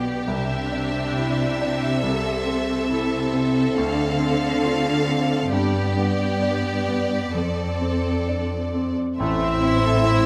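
A slow, rubato cinematic passage in D dorian opens with strings and piano together: a clear violin section carries the melody, a second violin line moves beneath it, and a lush viola section sits in the background. A clear concert grand piano supplies accompaniment with polished, deep bass, while a smooth cello section anchors the low end. The mood is moving and sorrowful, drifting at about 68 BPM through chords from Cadd9 and Am/C to Dm7, G and Dm7/F. At 9.2 s, as the harmony settles on Am, the woodwinds and brass join: an airy flute with a crisp attack, a warm oboe with light vibrato, and a distant, roomy clarinet add second lines. A mellow French horn section holds sustained chords from the background, and a bowed double bass section deepens the bass. The scoring-stage reverb gives the ensemble a moderate sense of space, and this fragment of a longer piece ends at 10.3 s.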